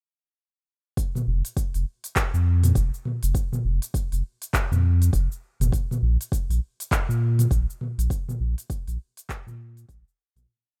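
A deep, round sine sub bass sits up front from 1.3 seconds, holding sustained dotted-rhythm notes between F1 and Bb2 over a soft, layered electronic kick. Around them, an Afro-pop kit with crisp hats, shaker, low toms and handclaps builds an organic, tape-tinged beat that sounds re-recorded in a small room, swinging gently at 101 BPM. The short, mystical and earthy downtempo piece has a rough home-demo dryness and fades out from 7.3 seconds.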